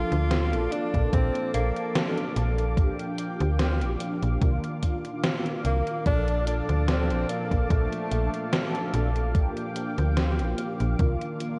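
A breathy, whispered tenor saxophone carries the jazz-style melody with vibrato and tape echo until 8.9 s in this faded, dreamy vaporwave fragment at 73 BPM in Bb major, over chords moving through Bbmaj7, Gm7/Bb and Cm11. Dark, detuned synth brass with ensemble chorus and an airy unison pad sustain the harmony, while a snappy FM bass with a metallic attack sits up front. A gated 80s drum machine plays hi-hat and gated-reverb snare, joined at 0.9 s by a thumpy electronic kick, in a dreamy mix soaked in hall reverb and cassette tape.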